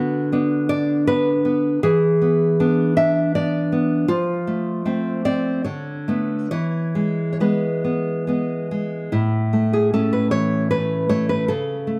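A fingerpicked nylon-string guitar, full-bodied and up front with fresh strings and the odd finger squeak, plays this nostalgic, sunny romantic classical solo in a rubato 3/4, drifting from Bm/D through E7 and F to settle on A at 9.1 s, all wrapped in light reverb in a short passage cut from a longer piece.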